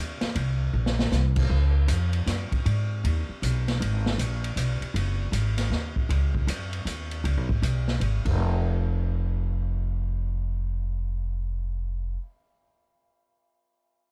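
A woody, pizzicato upright bass with steel strings sits up front to open this hypnotic, open modal jazz excerpt in a swinging 3/4 at 157 BPM. A natural, acoustic big-band drum kit joins at 0.2 seconds with crash, hi-hat, ride, a medium-tuned snare and a punchy kick, adds a brief fill at 0.7 seconds and drops out at 8.3 seconds, all captured dry on a cassette home recording.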